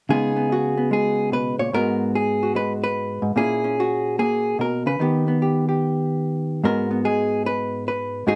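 Lightly reverberant, this short cut from a longer cool, swinging solo jazz piece in G# minor at 147 BPM features a dark, clean, compressed electric hollow-body jazz guitar, fingered and up front, playing alone from 0.1 to 8.4 seconds across a range from G#2 to C#5, moving through C#sus2, G#m9, A#m7b5 and D# before returning to G#m9 as a new section begins at 6.6 seconds.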